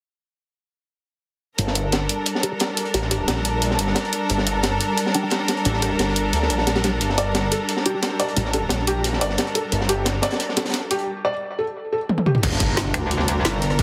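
A snarling, detuned saw bass growls up front through this dark, mechanical drum and bass excerpt at 177 BPM in G minor, set against lush bowed strings, a woody-snared kit layered over a gritty background breakbeat, dark dub chord stabs and a felt-muted upright piano from 7.2 s, before a drum fill gives way at 12.4 s to a drop of tight electronic kick and an impact, joined at 12.9 s by a metallic, wobbling FM bass, all under heavy radio-style compression.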